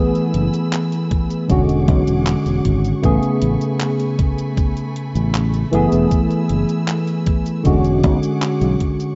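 Vaporwave with a faded, nostalgic mood, where a clean, up-front tine electric piano with ensemble chorus and analog delay moves through a rootless F#m11, E13 and Amaj9 over a punchy fingered electric bass, while a quiet, vibrato-rich bowed string section holds sustained chords through vintage 12-bit sampler grit, a detuned 8-bit drum machine adds cabasa, handclaps and hi-hat from 0.2 s, and a thumpy electronic kick, re-recorded in a small room, joins at 1.1 s, all in a rough, lightly reverberant home-demo mix with a dull top end.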